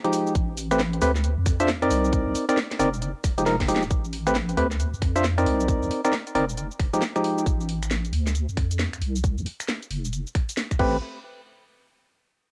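Skippy and moody, this UK garage excerpt moves at 135 BPM with a swung two-step feel, built on a home cassette recording with light reverb. Hollow, organ-like stabs with chorus and analog delay carry chords through Am9, Dm9, Cm9 and Fm9, while a tight electronic kick and a garage kit of cracking snare, finger snaps, cabasa, crash and warm hats, re-recorded in a small room, drive the groove, with a drum fill at 3.5 seconds. Underneath sits a deep, detuned wobble bass, saturated and pumping with sidechain compression, running from 0.4 seconds to 11.0 seconds as the stabs return briefly at 10.8 seconds.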